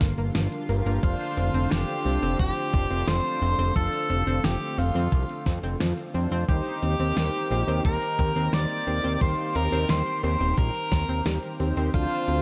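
A lush, warbling unison pad, a round analog pluck playing arpeggios, a fat, nasal analog bass, a thumpy electronic kick and a pop drum kit with a fat snare and crisp hats all open this driving, moody synthwave excerpt at 88 BPM. The pad holds sustained chords in the background with chorus and sidechain pumping, while the pluck carries chorus and delay behind the up-front, saturated sawtooth bass. At 0.7 seconds a mellow, brassy synth brass adds dark stabs with chorus and delay, and at 1.0 seconds a bright, forceful tenor saxophone takes the melody up front, punchy and distant with vibrato and delay. Alongside it, a very quiet, dreamy FM electric piano layered with a soft pad plays a high second line with chorus and phaser. The harmony moves from Gm7 to Dm7/F and settles on Eb6 at 6.5 seconds, all within light reverb and a digital ambience, with the tape-warm drums underpinning the groove.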